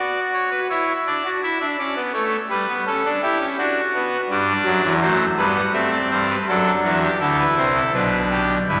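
A pipe organ on its trumpet stop carries this baroque-style three-part fugue alone, its brassy, bright voicing with its chiff sitting up front and spanning G1 to F#5. The music is lively and elegant, moving at 83 BPM in a straight 3/4 in G major, with harmony passing through D/F#, A7, Am and D7 before settling on G/B. A long, wet church reverb of 3.2 seconds surrounds the organ in this short cut from a longer piece, which runs to 8.8 seconds.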